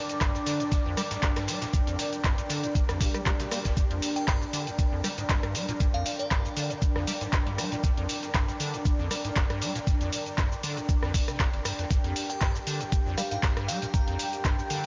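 Two pads open together, a dark, detuned analog pad holding sustained G minor chords and a warbling, lo-fi tape-like pad adding texture, both with chorus and sidechain pumping, joined almost at once by a thumpy, up-front electronic kick, a punchy analog drum machine with handclaps, rim click, hi-hat and shaker, a very quiet overdriven sampler-style kit, and a squelchy, resonant acid bass riff with tube saturation and tape echo. This driving, gritty acid house excerpt runs at 118 BPM with a light swing, and a faint electronic swell rises in the background at 3.0 seconds before a crystalline FM bell melody drifts in behind at 4.2 seconds with diffuse ambient delay, returning near the close. The dreamy mix is soaked in a huge reverb and rolled off in the highs.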